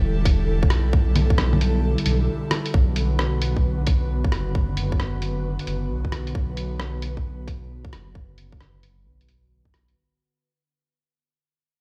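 Swung sixteenths drive this ghostly, wistful future garage fragment, where a tight, overdriven electronic kick sits up front beside a muffled, pitched-down sampler kit of bongos, hi-hat and rim click, a deep, rumbling detuned saw bass beats underneath, and an airy, breathy pad with chorus and sidechain pumping holds sustained chords moving from Em7 to Bm, with a short break at 2.3 seconds giving way to a fade-out from 2.7 seconds, the mix played back through a big sound system in a bare stone room.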